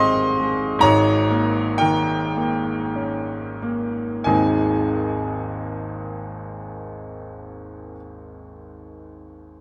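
A clear, open baby grand piano plays alone and up front in this short romantic nocturne fragment, its notes ringing with long sustain across a broad range from deep bass to high treble. The mood is nostalgic and dreamy, with a flexible, rubato three-beat lilt that slows over the opening 4.3 seconds before a new passage begins. Close, detailed microphones capture the instrument, with a light touch of reverb adding air around it.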